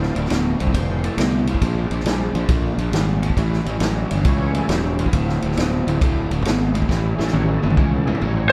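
Gritty and smoky, this short slice of swung blues rock with a southern rock edge moves at 136 BPM in D minor, cycling through Dm9, Bb7 and A7. A crunchy, double-tracked overdriven guitar plays a low riff over a growly, fuzz-soaked fingered bass placed up front, while a punchy vintage acoustic kit of kick, snare, toms and ride carries the beat and closes with a drum fill from 6.9 seconds. Behind them, a thick overdriven tonewheel organ holds sustained chords through a slow rotary speaker and chorus vibrato, and the band plays live in one room with light reverb.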